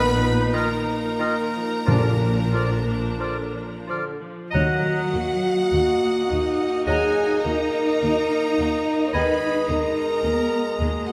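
An elegiac, solemn passage from a slow romantic symphonic movement opens with a clear violin section singing the vibrato-laden melody over a second, richer violin line, focused violas, portamento-inflected cellos, dark soft-edged double basses, a distant bassoon, mellow sustained French horn chords, soft trumpet stabs and hard-mallet timpani. A pure, hollow flute group, an oboe and a bright clarinet add background lines from 0.5 seconds, and a vintage-toned trombone section joins the sustained chords at 1.9 seconds. The timpani fall away at 6.3 seconds as the rubato phrase moves through darker minor harmonies, all within the wet reverb of a scoring stage.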